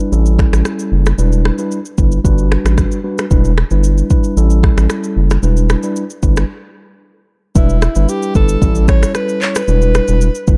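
Afrobeats in a mellow, smooth mood, where a clean tine electric piano provides accompaniment over a round, deep analog bass and an up-front electronic drum kit of deep kick, rim click, shaker, finger snaps and handclaps, all within a dark production. The harmony moves among Em7, A7 and Gmaj7 until a break at 6.5 seconds. At 7.6 seconds a breathy alto saxophone takes the solo melody, intimate and whispered, with vibrato, scooped notes and a tape echo.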